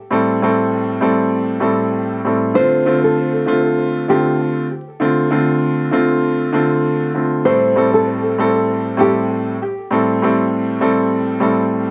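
Vinyl crackle and a light reverb frame this tough, moody hip hop fragment in A minor, cut from a longer piece and moving at 98 BPM with a swung sixteenth-note feel. An intimate, up-front concert grand piano carries the accompaniment throughout, its deep bass and audible action noise softened by cassette-tape coloring and filtering as the harmony moves from Am7 to Dm7 and back to Am7. At 2.6 seconds a dark, woody nylon-string guitar with old strings and a thumb-plucked tone takes the melody through tape echo, falling away at 9.3 seconds.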